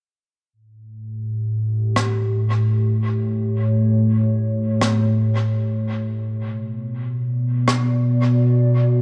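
A warbling, detuned pad sits up front from 1.0 seconds, holding sustained chords with a slow attack and long release, its square and triangle tones colored by ring modulation, chorus and its own reverb, and a filter sweep running across it. This is a peaceful, spacious stretch of ambient dub in A mixolydian at 84 BPM in 4/4, with a 57% swing on the sixteenths and tuning set to A4 = 438 Hz. The pad's nostalgic, lo-fi character rests on an A7 chord before shifting to Bm at 6.2 seconds. A quieter acoustic rim click enters at 2.0 seconds, airy and polished with a brushy touch and a dub echo trailing behind it. A moderate echo-chamber reverb and dark, warm production give this cut from a longer piece its sense of space.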